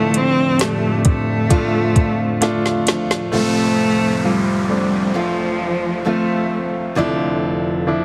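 Heavily compressed with a radio-like sound, light reverb and small-room ambience, this hopeful, emotional pop ballad fragment in F major moves at 66 BPM, led by a rich, bowed solo cello carrying the melody with vibrato and a touch of delay until 6.7 seconds. A brilliant, up-front grand piano and a picked, full-bodied steel-string acoustic guitar playing background arpeggios accompany it, while a glassy, ethereal FM pad with ensemble chorus adds dark sustained chords. A smooth electronic R&B drum kit with soft kick, woody snare and metallic hats plays a fill from 2.4 seconds, and at 3.3 seconds the pad and drums stop as an electronic downlifter enters.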